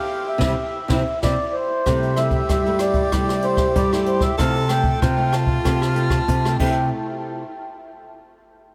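Samba and choro at 95 BPM in a straight 4/4, this short, lively and sunny excerpt in C major sits in a dreamy mix soaked in a huge ambient reverb. A mellow accordion carries the melody, reedy and smooth with slow beating and a touch of tape echo, while a tenor saxophone with vibrato, soft attack and scooped notes plays a close-miked second line beneath it in jazz style. From 0.4 seconds a fingerpicked, classical nylon-string guitar with ensemble chorus supplies accompaniment in the background, and a second, thumb-plucked nylon-string guitar holds down the bass. A jazz brush drum kit sits up front with dark cymbals, a medium-tuned snare, a boomy kick, hi-hat and rim clicks. The band opens on an accent over C, the harmony moves through C6 and Fadd9/C, and a drum fill at 6.6 seconds leads into a final stretch where the chords drop away.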